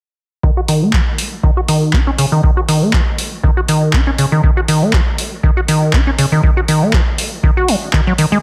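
From 0.4 s a squelchy, resonant square-wave acid bass riff, hollow and up front with tube saturation, sidechain pumping, analog delay and a filter sweep, drives this raw, hypnotic acid house excerpt over a deep, tape-warm analog kick, while an analog drum machine adds handclaps and metallic hi-hats from 0.7 s, the mix sitting in light reverb with a heavily compressed, radio-like sound.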